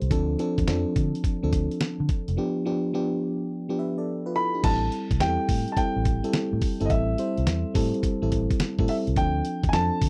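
A gritty, compressed sampler-style drum kit sits up front with a thumpy kick, fat snare, hi-hat and crash, driving this slick, confident new jack swing R&B passage with a swung sixteenth feel, cut from a longer piece. A dark, round, foam-muted electric bass and a mellow FM electric piano with a fast, decaying attack move through Dm7, G7 and Am7, and at 4.4 s an intimate baby grand piano enters with a high melody, its action noise audible and a slapback echo trailing each note. The sound is dry and close, like a 1970s studio.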